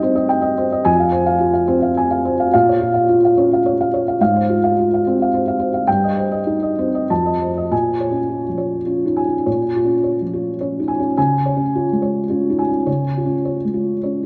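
Neoclassical minimalist piano in 3/4, intimate and melancholic, where a solo felt-muted upright piano with a soft, boxy, thick-felt tone sits up front and moves with rubato at 93-110 BPM through chords from Cm/G and Fm toward Bb minor, settling there at 7.7 s on Bbm7 before reaching Db at 11.2 s, all bathed in a wet scoring-stage reverb and the warbling pitch drift of worn cassette tape in this brief cut from a longer piece.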